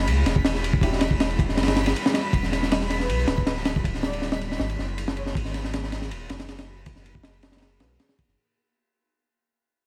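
A crunchy, gritty breakbeat kit with a punchy kick, high-tuned snare and dark cymbals drives this dark, raw drum and bass jungle fragment at 159 BPM over a round, deep dub sub bass, a warbling, ethereal pad on minor ninth chords and a sparkling granular shimmer, while a very quiet, mellow baby grand piano adds brief stabs and a breathy, flute-like synth lead sings a short vibrato line from 3.0 to 5.3 s, set in light small-room ambience with vinyl crackle as the music fades out from 2.3 s.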